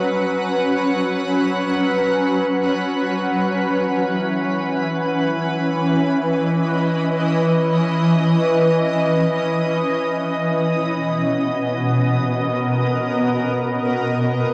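Unfolding in free time with an unmeasured, floating pulse, this short ambient excerpt in C# dorian carries a spacious, reflective mood across its 14.5 seconds. A single shimmering pad plays alone throughout, sitting up front and spanning B2 to F#5, built from detuned, unison sine tones with an octave-up shimmer and a granular, ethereal grain. Its slow attack, sustained body and long release are thickened by chorus and the pad's own reverb, while a cassette tape character colours the tone. The harmony drifts from F#sus4 to C#m7/E at 3.6 seconds, then settles onto Bmaj7 as a new section opens at 10.6 seconds. The home cassette recording sits in a wet studio reverb with a short decay, lending the sound a soft, hazy intimacy.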